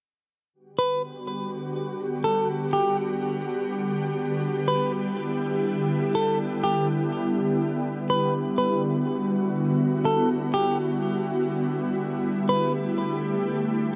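A half-time 4/4 hip hop feel floats beneath this floating, blissful passage, cut from a longer piece, as an ethereal, detuned sawtooth pad sits up front with slow-swelling sustained chords from 1.0 to 14.0 seconds, thickened by ensemble chorus and its own reverb. A clean, hollow-bodied electric guitar enters at 0.8 seconds with a fingered melody in a narrow upper register, softened by a low-pass filter and trailed by digital delay. The harmony rests on Em9 before turning to A7sus4 at 12.2 seconds, all bathed in a huge ambient reverb with a very long tail.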